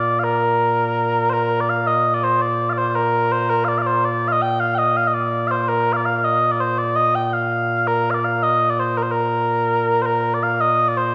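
Proud and stirring, this short cut from a longer piece of Scottish traditional pipe music moves at 110 BPM in a straight 6/8, set in Bb major. Mellow small bagpipes play alone throughout, sweet and continuous with vibrato, up front and spanning Bb2 to G5. A wet recital-hall reverb gives the sound a resonant, church-like space, and a new section arrives at 1.3 seconds.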